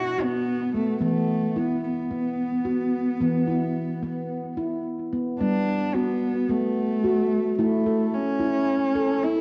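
A dark, intimate cello carries the melody, bowed by a single player with light vibrato and an airy bow, sitting close and up front. Alongside it, a handpan of nitrided steel, played with the fingertips, rings out arpeggios in a warm, airy tone, coloured by cassette tape and an analog delay. Cut from a longer meditative world piece, the passage is gentle, in 4/4 with a slight swing on the sixteenths. The harmony moves from Bm to E5, and at 5.4 seconds a second section shifts to G and then A. Both parts sit in a moderate spring reverb and a small room ambience, and the home cassette recording gives the sound a homespun character.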